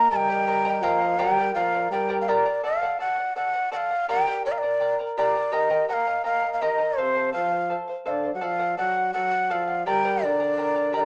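Earthy and festive, this short Andean folk excerpt in G minor moves at 83 BPM in a straight 2/4, with a breathy, chiffy large quena carrying the melody up front over shimmering, fingerpicked charango accompaniment, while a warm, lightly vibratoed trombone adds a second line from 0.0 to 2.4 seconds and again from 7.0 seconds, all heard through a small, reverberant room and a small-speaker sound.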